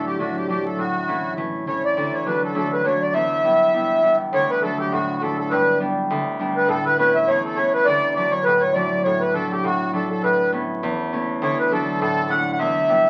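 A reedy, dark yet sweet accordion with a light tremolo tuning carries the melody up front in this wild, driving Celtic reel, a fragment cut from a longer folk piece at 203 BPM in 4/4 with a swung eighth-note feel. Fingerpicked concert harp rings out beneath it, close and present, voicing chords that move around D, A, Em and G, with a fresh passage beginning at 4.3 s. The sound is that of a very old 78 rpm record, vinyl crackle and all, set in a reverberant studio ambience.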